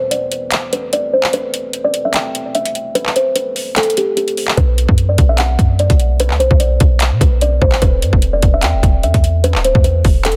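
A filtered kalimba opens this melancholic, brooding trap excerpt, its woody, hollow plucks sitting up front with a tape echo and a continuous filter sweep, while a trap kit of hard-clipped kick, metallic hi-hats and handclaps drives a half-time feel. At 4.6 s a clean, sine-like 808 bass drops in with a deep, boomy weight and decaying notes as the harmony moves from B minor to an E power chord. The sound is dry, dense and heavily limited.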